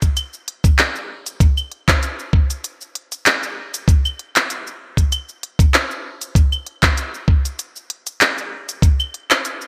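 Downtempo groove at 97 BPM in 4/4 with a light sixteenth-note swing, carrying a mystical, meditative mood across this short excerpt cut from a longer piece. An up-front, compressed electronic kick with a gritty, thumpy, sampler-style character runs from the start to 9.0 seconds, while an up-front organic electronic kit of claves, handclaps, smooth hi-hat and shaker, treated with gated reverb, plays through to 9.7 seconds. The production is bright and 1980s-styled in its digital sheen, set in a light reverb.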